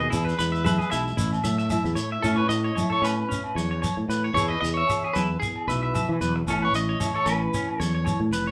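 Warm and danceable, this short excerpt of highlife guitar band music moves in a lightly swung four, with the feel of a group playing live together in one room under a wet studio reverb. Up front, a bright, clean picked electric guitar carries the melody with tremolo, while a growly, punchy fretless electric bass sustains beneath it. A twangy electric guitar at the edge of break-up plays picked arpeggios, and a small fingerpicked nylon-string guitar sits in the background, its finger squeak audible. Percussion enters at 0.1 seconds: ringing, band-limited agogo bells and soft-handed, thick-skinned congas stay in the background, alongside a grainy, mellow shekere. The harmony moves between E, A and Aadd9 chords.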